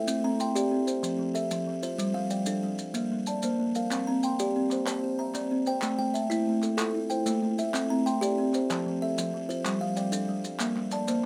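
Southern African traditional music in an mbira-style interlocking cycle, this warm, hypnotic excerpt moves at 125 BPM in a straight 12/8 in C mixolydian, circling through chords such as C, F, G5, Bb and Am. A buzzing, hollow-bodied kalimba, close-miked, dry and up front, spins woody arpeggios plucked with a thumbnail, alongside a second ringing kalimba with a solid-board tone heard in a boxy small room, while grainy, mellow maracas patter along underneath. From 3.9 seconds a human group handclap joins in, giving the light reverb of this short cut from a longer piece a communal, hollow snap.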